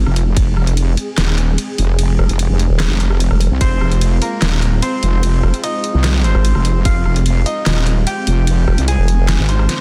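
A heavy, aggressive half-time wobble dubstep groove at 148 BPM in F minor sits on a dense, limited master, where two up-front, saturated wobble basses, one nasal and vowel-swept and the other a detuned sawtooth unison, growl beneath a deep-snared electronic kit with handclaps, hi-hat, ride and rim clicks, punchy electronic kick hits, and a lush supersaw pad pumping softly in the background, before a brilliant grand piano with audible action noise and dub echo enters at 3.6 seconds in this cut from a longer piece.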